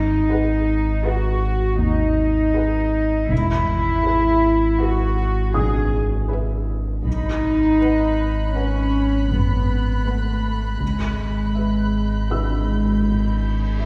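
Bowed cellos played sul tasto sit up front with a pure, floating tone, joined by a deep sine-and-triangle sub bass drone on G#1 and distant double basses in this ominous, tense suspense film cue in G# minor, moving at 80 BPM in 5/4 over G#m7, E, B and C#m7/G#. A very quiet violin melody hovers high above dark, woody violas with vibrato in the background, while a boxy felt-muted upright piano with audible action noise enters at 5.5 s and a second violin section adds a soft-attack high texture from 7.1 s. A huge, bright reverse cymbal arrives at 13.0 s near the close of this excerpt from a longer piece, with the ensemble heard from further back in a wet scoring-stage reverb.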